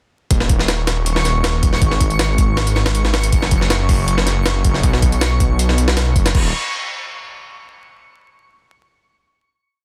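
A heavily chopped, sampler-style breakbeat drives this short, dark and nostalgic drum and bass piece at 159 BPM, its gritty, overdriven kit up front with a thumpy kick, high-tuned snare, hi-hat and crash. A thick, menacing detuned saw bass with tube saturation sits alongside it, sliding through long gliding notes beneath chords moving from Dbsus2/Eb through Absus4 and Gb5 to B5, while a twinkling granular texture holds a high, reverb-bathed note in the background. The drop runs from 0.3 to 6.3 seconds before a final note rings out, all within a dense, heavily limited digital ambience flecked with vinyl crackle.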